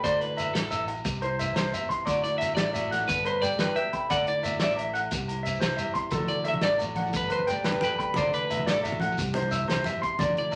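This carefree highlife guitar band passage, cut from a longer piece, opens with guitars, bass, drums, agogo bells and shekere all at once. Out front is a twangy, slightly broken-up electric guitar playing fingered arpeggios high in its range, over a dark, picked clean electric guitar carrying the melody and a fingerpicked flamenco guitar supplying quieter accompaniment. Underneath, a round, amped fingered bass sits low beneath a muffled, lo-fi vintage drum kit with a punchy kick, a medium-tuned snare and hi-hat, while ringing agogo bells in the distance and a grainy, mellow shekere add texture. The groove moves at 118 BPM in a straight 12/8, in D mixolydian, cycling through Dadd9, C and Gadd9 chords under a wet studio reverb. At 6.1 seconds, warm congas with a thick skin, struck with hard hands, join in the background before dropping out at 10.3 seconds.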